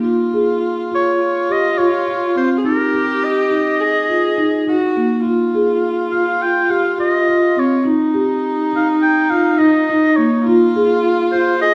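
In a straight 9/8 pulse at 207 eighth-note beats per minute, this pensive, hypnotic excerpt of contemporary chamber music opens with mellow, round marimba arpeggios on rosewood bars played with soft mallets and a dark, softly bowed viola second line with light vibrato, before a classical-style solo oboe enters at 0.9 s with a warm melody, all three up front while the recital hall adds a 1.5-second reverb as the harmony moves from Fm through Dbmaj7#11, Eb and Gbmaj13 before returning to Fm.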